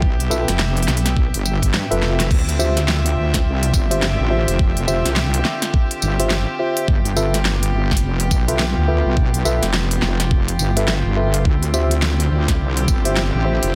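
Glitch hop at 105 BPM in 4/4 with a swung sixteenth-note feel, this funky, gritty passage in D dorian is cut from a longer piece and moves between G13 and Dm11 chords. A heavy, detuned wobble bass sits up front from the start, its sawtooth-and-sine tone saturated through tube warmth and thickened with chorus. A knocking electronic kick and a layered pop drum kit with a fat snare, crisp hats, crash cymbal and tambourine sit up front in a small room, with a drum fill at 2.0 seconds. Bowed chamber strings float in the distance on soft-attack sustained chords, roughened by vintage 12-bit sampler grit and pumping against the sidechain. A mellow tine electric piano adds clean stabs from 0.3 seconds, pumping as well and trailed by dub echo. Light digital reverb surrounds a dense, heavily limited modern master.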